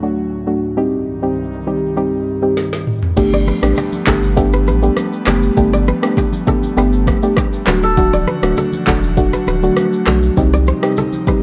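A dry, gritty recording with little reverb carries this breezy, sunny afrobeats cut, opening on a soft, round pluck accompaniment over an airy, breathy pad of sustained chords, both shaded by chorus and a low-pass filter. At 2.6 seconds an overdriven, electronic afro-pop drum kit arrives with a fill, its deep kick, woody snare, handclaps, rim clicks, shaker, toms and crash cymbal sitting up front. From 3.2 seconds a round sine sub bass anchors the low end, medium-tuned congas ring in the background, and a crisp, fingerpicked kora riff with tape echo enters just after. The harmony moves from D to Cm, settles on Gadd9, then returns to D and Cm, keeping the mood light and easygoing to the end.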